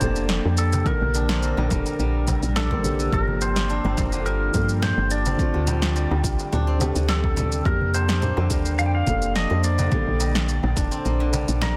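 Meditative and warm, this short organic downtempo excerpt at 106 BPM in 4/4 drifts through Fsus4, Bbmaj7, Gm7 and Dm7 as a bright, twangy clean lap steel guitar carries the slide melody through digital delay and shimmer reverb over a felt-muted upright piano with audible action noise and sidechain pumping, a silvery fingerpicked steel-string zither ringing out arpeggios through tape echo, and a round, woody FM bass sitting up front, while electronic congas, shaker and a punchy overdriven snare play alongside a deep electronic kick and a crisp darbuka in the background, with a very quiet swell sounding between 2.2 and 3.1 seconds, all in a dense, heavily limited modern master.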